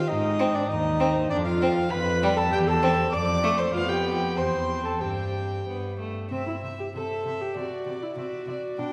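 A rubato two-four lilt carries this cheerful, spirited fragment of a quick classical-period string quartet movement, where a nasal, distant violin sings the melody over an up-front viola accompaniment with airy bow, a reedy cello bass entering at 0.1 seconds and a rich, close second violin joining at 0.4 seconds, all bowed on gut strings in period style and heard from further back in a wet concert hall as the music turns to a new section at 6.3 seconds.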